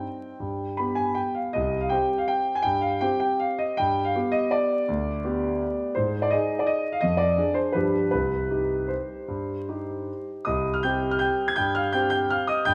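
A rubato waltz in three, this nostalgic and bittersweet classical fragment, cut from a longer piece, features a solo concert grand piano that sounds clear and up front with deep bass and an open tone. It spans a broad register in a wet recital hall reverb laced with vinyl crackle, its opening phrase settling from G7 onto C minor at 8.1 seconds before the theme begins again at 10.5 seconds.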